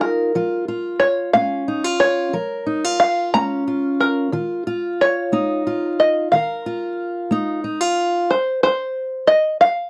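Rolling in a straight 6/8 lilt, this brief folk passage has an uplifting, hopeful mood. An open-back banjo carries the melody with a mellow, twangy, plunky tone that sits up front in the mix. Beneath it, a fingerpicked steel-string acoustic guitar supplies warm accompaniment, moving from Bbm/F to Ebsus2. At 8.3 s the guitar stops and the banjo continues alone until the fragment breaks off at 9.9 s. The sound is dry and close, in the manner of a 1970s studio recording, with only a light touch of reverb.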